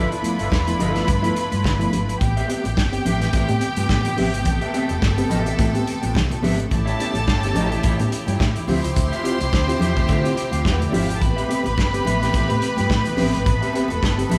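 A lightly swung 16th-note groove at 107 BPM in 4/4 drives this danceable disco cut in A minor: an up-front soul drum kit with a tight kick and bright congas in the background join a round, dark hollow-body fingered bass, a mellow clean electric guitar, a reedy electric piano with fast tremolo, a lush, distant symphonic violin section carrying a second line, and an earthy studio string section holding sustained chords, the band playing live together in a large studio room with moderate reverb as the harmony moves from G13 to Am9, A7 and Dm11.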